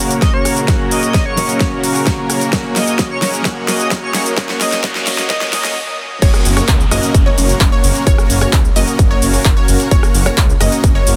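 Festival progressive house at 130 BPM in F# major, anthemic and uplifting, this clip builds over a fingerpicked steel-string acoustic guitar with tape echo, distant reedy chamber strings, an airy dreamy lead with chorus, a huge filtered supersaw riff, a big-room kit with a huge snare and metallic hats, a punchy up-front kick and very quiet risers and noise sweeps, pausing briefly at 5.8 seconds before the drop at 6.2 seconds brings in a lush bright unison pluck arpeggio and a thick, menacing detuned saw bass, with the guitar, strings, supersaw, pluck and bass pumping under sidechain in a dense, heavily limited master.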